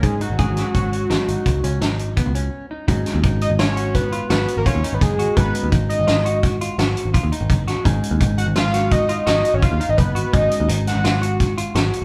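Driving in a straight 7/4 at 169 BPM, a loose indie drum kit with a punchy kick and a rolled-off top sits up front, while a round, foam-muted picked bass anchors this tense progressive instrumental excerpt in G# dorian, moving from D#m7/G# to G#m7 after a brief break at 2.5 seconds. A dark, scooped clean electric guitar plays arpeggios and a compressed hollow-body jazz guitar accompanies in the background. Over them a fat, detuned analog lead blending sawtooth, square and triangle waves with a sub octave, wave folding, a filter sweep and vibrato carries the sustained melody until 11.4 seconds, the band sounding live together in one large studio room with moderate reverb.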